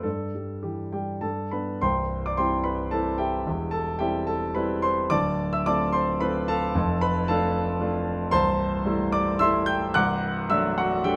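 A grand piano opens alone with a brief passage that moves from an Emadd11/G chord to G before settling onto C at 1.8 seconds. This is a romantic character piece in triple metre, played with a freely breathing rubato that gives it a passionate, lyrical feel. From there the harmony moves through C/E, Dm7 and Dm/F toward Am7/C, reaching a D7/C at 9.9 seconds as the clip, cut from a longer work, ends at 11.2 seconds. The instrument sounds polished and up front, with a warm tone that spans the deep bass up to the high treble. Light reverb surrounds the piano, keeping it present.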